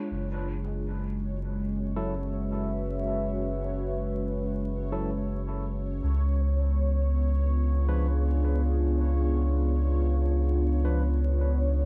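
Meditative and spacious, this ambient fragment from a longer piece rests on a warbling, nostalgic tape-like pad holding sustained chords, with a round, deep dub sub bass up front and a resonant, bubbling stepped-filter texture hovering above. A ringing handpan arpeggio sounds briefly in the background, stopping by 1.5 s, and from 2.0 s a barky, lightly overdriven tine electric piano adds stabs through dub echo as the harmony moves from F#7(no3) to C#7b9 at 6.0 s. The home-cassette recording carries vinyl crackle, light reverb and a gentle swing.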